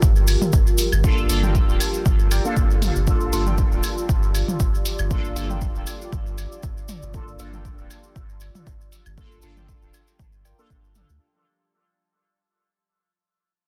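Dub techno in G minor at 118 BPM, this cavernous, nocturnal passage cut from a longer piece sits on a single Gm7 chord with a light 16th-note swing, fading out across its full 11.2 seconds. A deep, moody sawtooth pad with a slow attack and long release holds sustained chords through chorus and its own reverb, pumping against the sidechain above a clean, smooth sine sub bass that pumps as well. The punchy analog kick sits up front, joined by a grainy, bright acoustic cabasa and, from 0.3 seconds, a small-room analog hi-hat dulled by a low-pass filter, plus layered, overdriven electronic claves and toms that pump and trail dub echoes. From 1.0 seconds a juicy, detuned resonant polysynth plays stabs with a filter sweep and moving notch, colored by chorus, phaser and dub echo. Further back, warbling lo-fi synth keys carry a nostalgic, decaying riff through chorus, phaser, a low-pass filter and dub echo, all inside a dense, heavily limited modern master with digital ambience.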